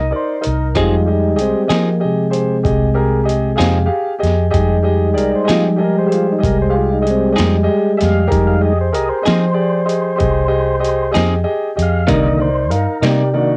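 A dry, homespun cassette sound wraps this brooding, soulful slow blues excerpt in 12/8, moving at 64 BPM with a straight feel as it sits mostly on Fm7 between brief Cm7 chords. A tonewheel organ through a slow rotary speaker takes the solo throughout, its tone clear and clean, while a natural concert grand piano with deep bass and a picked, compressed clean electric guitar with tremolo accompany up front. Underneath, a dark, round, foam-muted fingered electric bass punches along, and a gritty, pitched-down sampler-style boom bap kit with a thumpy kick and high-tuned snare enters at 0.4 seconds, sounding overdriven and re-recorded in a small room.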